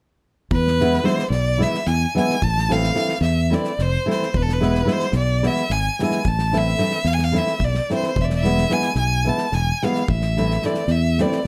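In a straight 7/8 lilt, this restless, virtuosic Balkan wedding-band fragment sets a clear, focused bowed violin with vibrato and plate reverb over a round, amped fingered electric bass and a dark, fingerpicked classical nylon-string guitar, all up front, while a loose drum kit with a punchy kick and pumping room sound sits in the background as the chords alternate between E and Am.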